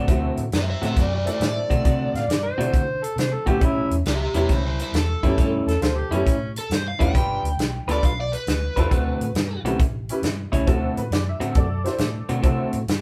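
Swaggering and gritty, this electric blues shuffle at 136 BPM in D mixolydian swings on a slightly broken-up, compressed guitar riff pushed up front, a round, foam-muted fingered bass, a jangly, detuned honky-tonk upright piano and a natural country drum kit with a punchy kick, while an overdriven semi-hollow guitar carries the melody until 9.6 seconds and an amplified, overdriven harmonica adds a second line full of tongue slaps and scooped notes from 2.2 to 6.5 seconds, all captured as a band playing live in one room with light reverb.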